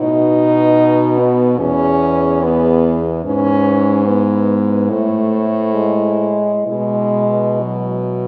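Tender and serene, this short passage cut from a longer classical piece for horn quartet unfolds in E major at a gentle 63-77 BPM in 4/4, with a rubato feel. A dark, close-miked French horn carries the melody between B4 and C5, yet it sits in the background, while a mellow second horn traces a very quiet inner line beneath it. Up front, another mellow horn supplies the accompaniment with light vibrato and a distant, roomy quality, joined by a warm, soft-attacked horn holding the bass between E2 and B2. All four play together for the full 8.3 seconds, moving through B, E, E/G#, Am and a closing Bsus4 that leaves the phrase suspended. A wet concert hall reverb places the ensemble further back in the room, lending the sound a spacious, resonant glow.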